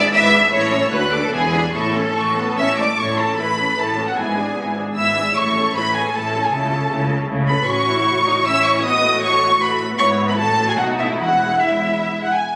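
This is a quick classical-period movement for string orchestra in triple time, graceful and cheerful, with a rubato feel that lets the pulse breathe. The first violins carry the melody up front, their tone rich and lush with vibrato and a soft attack, while the second violins play a focused second line beneath them. Violas fill in the accompaniment with a warm, expressive sound set further back, and the cellos and double basses share the bass line with a smooth, even bowing, the basses adding only light vibrato. The harmony moves through bright cadences before shifting toward the dominant key at 7.7 s, where seventh chords build to a firm close on E. All parts sound together from the start, and the lower strings and second violins stop at 12.2 s while the melody lingers until 12.6 s. The recording, cut from a longer piece, was captured on a phone in the room and carries a wet scoring-stage reverb that gives the ensemble a spacious halo.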